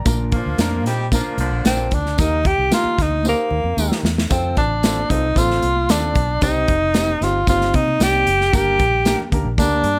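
A small room's reverb wraps this short, cut-from-longer clip of uptempo 1960s-style soul, moving at 114 BPM in a straight 4/4 with a warm, joyful mood. A woody, open upright piano and a dark, round, foam-muted electric bass start together at the top, joined by an airy, polished acoustic drum kit with a punchy kick and medium-tuned snare, plus a jingly, saturated tambourine and very quiet, high-tuned congas played with hard hands. A loose horn section with light vibrato and octave doubling adds a brief second line from 0.3 to 1.9 seconds. The breathy tenor saxophone takes the melody at 1.7 seconds, sitting up front with a whispered, intimate tone, soft attack, scooped notes and jazz-style vibrato. A drum fill at 3.3 seconds leads into a new section at 4.3 seconds as the harmony moves from Bb and Eb through F, Cm and Gm.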